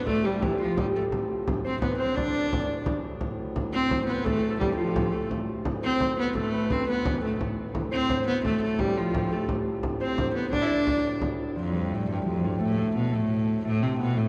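Bathed in a long, wet church reverb with a dark production, this mysterious, driving medieval dance in D dorian moves at 115 BPM in 6/8. A rich, gut-string viola da gamba carries the melody up front with light vibrato and an airy bow. Behind it, a breathy bass recorder and a ringing, fingerpicked concert harp share a second line over a reedy, nasal harmonium drone, while a deep frame drum struck with hard hands drives the rhythm from 0.1 to 11.4 seconds before the fragment breaks off in a new section.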